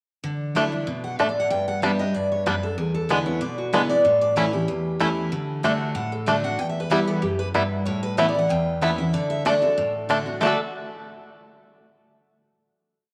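A bright, jumbo-bodied acoustic guitar carries a running-eighth-note fiddle tune from 1.0 seconds in this joyful, rustic bluegrass piece in D major at 189 BPM with a light swing, over a second full-bodied guitar with fresh strings and audible finger squeak playing alternating bass, strums and bass runs, and a twangy, percussive fingerpicked banjo weaving three-finger rolls and off-beat vamping, all set in a lush plate reverb before closing on a final chord at 10.4 seconds.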